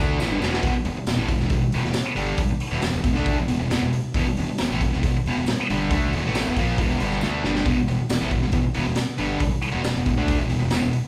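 Swaggering and raw, this live-in-one-room garage rock excerpt drives a bright, double-tracked fuzz guitar riff up front over a gritty, high-tuned-snare drum kit with punchy kick and pumping room sound, with fills at 0.2 and 7.2 seconds, while an overdriven fingered bass and a jingly, close tambourine sit in the background of a reverberant studio space.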